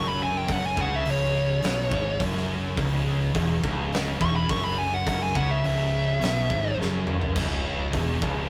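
A compressed fuzz lead guitar solos up front over a heavy, hypnotic stoner doom riff carried by two thick fuzz guitars (one very quiet), a bright, double-tracked overdriven guitar in the background and a growling fingered bass, while an oversized low-tuned drum kit with boomy kick, fat snare and dark cymbals joins at 0.5 s, plays a fill at 6.8 s and pushes into a new section at 7.4 s, all caught in a rough rehearsal-room excerpt.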